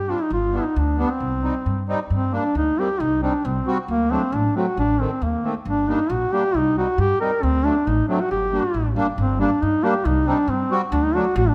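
A mellow duduk carries the melody up front, its folk-style line colored by vibrato and scooped notes, with a smooth top to its tone as it sings between Bb3 and Bb4. This is a festive yet bittersweet klezmer piece in G harmonic minor, moving at a straight 136 BPM in 2/4, and the clip is cut from a longer performance. Beneath the duduk, a pizzicato upright bass sits prominently in the mix, woody and growly with the bite of steel strings as it anchors the low end from G1 to G2. An accordion enters at 0.1 s with a reedy, sweet yet dark accompaniment, its light tremolo tuning adding a gentle shimmer to a smooth sound. The harmony cycles through Gm, Cm, D and a passing Adim, with a brief opening section giving way at 2.1 s to a longer passage that repeats at 9.2 s. A moderate recital hall reverb places the trio in an open, natural-sounding room.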